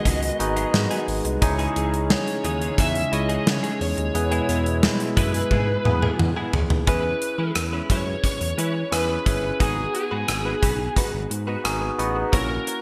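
A gated 1980s drum kit sits up front, its punchy kick, medium-tuned snare, rim clicks, hi-hat and toms ringing in a bright stone room before the gated reverb cuts them short, with a drum fill from 5.5 seconds. This uplifting, romantic pop excerpt moves at 88 BPM in a straight 4/4 in E major, drifting through G#m7, C#madd9 and E, then E6, as it passes into a new section at 6.9 seconds. A dark, overdriven lead guitar through a small cranked amp carries the melody with analog chorus. Beside it, a barky tine electric piano plays accompaniment through a combo amp with subtle chorus, and a clean, compressed, direct-recorded electric guitar picks a riff bathed in ensemble chorus and digital delay. Underneath, a smooth, detuned sawtooth-and-triangle synth bass holds the low end. A warbling, vintage analog pad with a slow attack sustains chords in the background until 6.8 seconds. The polished digital production adds a lush hall reverb and a small room reverb to the whole sound.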